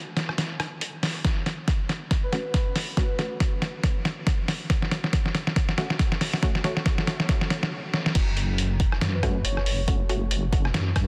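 Brooding and heavy, this deep dubstep excerpt moves at 139 BPM in a half-time feel with a swung sixteenth lilt, rooted on an F# minor chord. A muted, detuned dub chord stab sits in the background from the start, colored by chorus, cassette-tape grit and dub echo while a filter sweep moves across it through the build-up. A compressed, pitched-down sampler-style drum kit of crash, hi-hat, rim click and a medium-tuned snare arrives up front, joined at 1.2 seconds by a layered, overdriven electronic kick, with a drum fill running through the build. A soft, breathy flute-like synth lead with vibrato drifts in briefly twice, distant and echoing. After a stop just before 8.2 seconds, the drop lands as a dark, detuned wobble bass with chorus takes the low end up front, giving the close of the excerpt a dense, heavily limited weight in a lightly reverberant space.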